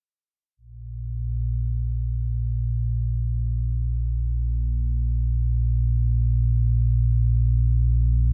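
Ambient in free time, this unsettling, desolate fragment of a longer piece is carried by a single deep rumbling drone that enters at 0.8 seconds and sustains through 8.3 seconds, spanning Bb1 to Bb2. Its dark, ominous tone blends triangle and sawtooth colours, rises with a slow attack, holds with a long release, and sits up front under a lush chorus and its own reverb. A wet cathedral reverb with a 6.1-second decay places it in a vast, echoing space.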